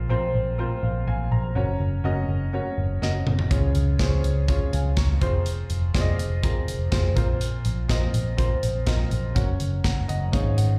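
An upright piano with a woody tone, short sustain and a slapback echo opens this uplifting, anthemic piano-driven pop excerpt alongside a dark, round, foam-muted electric bass picked low and up front. The tempo sits at 123 BPM in a straight 4/4, and the harmony moves through Bbsus2, Gb, Db and Fm before circling back to Bbsus2 and Gb. At 3.0 seconds a drum fill brings in an acoustic kit with a punchy kick, a medium-tuned snare, hi-hat and toms, its top rolled off and its sound mid-forward and close. The piano plays accompaniment throughout and closes with a fill of its own from 9.8 seconds. The whole performance sounds like a live gig heard through a club PA, with small-room ambience and club reverb around the players.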